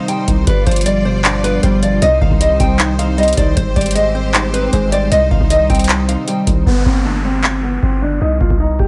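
A half-time trap groove from a booming, tape-warm analog drum machine with deep kick, metallic hi-hats and handclaps sits up front over a long, mellow, sine-like 808-style bass, while a fingerpicked nylon-string guitar carries an eerie, menacing hip hop melody through a low-pass filter above detuned, warbling lo-fi synth keys and a lush, bowed symphonic string section, until at 6.7 s the keys, strings and hi-hats drop away and an electronic downlifter joins the guitar, drums and bass.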